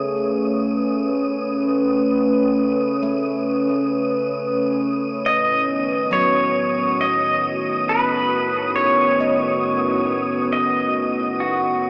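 Ambient and weightless, this serene piece sits a vintage analog pad of smooth, warbling sustained chords up front, while a ringing, meditative handpan plays arpeggios in the background and an airy, breathy wind-like texture hovers above, both fading in. At 5.3 seconds a bright, clean pedal steel guitar enters up front with a slide melody, shaped by fingerpicks and volume swells and trailed by a diffuse ambient delay. The dreamy mix is soaked in lush hall reverb with a small-speaker character, and it fades out from 9.9 seconds as this excerpt is cut from a longer piece.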